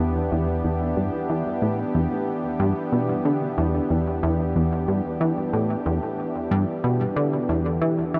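Mysterious and hypnotic, this short excerpt of ambient, sequencer-driven space music pairs a punchy, ring-modulated analog bass riff, sent through delay and swept by a filter, with a bright, detuned sawtooth pad holding sustained Em7 chords through chorus, both up front in a vast, echoing space with a huge reverb tail.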